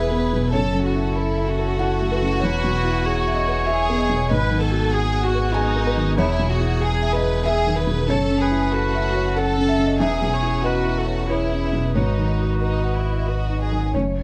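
A felt-muted upright piano with audible action noise sounds from the first moment alongside a sul tasto chamber violin section singing the melody, a single floating viola, a dark string section holding sustained chords in the background and a deep, up-front sub bass with octave, forming a reflective, longing neoclassical excerpt at 94 BPM in a rubato 3/4 that cycles through F#m7, C#m7/E, G#m7 and Emaj7 in F# dorian under light reverb.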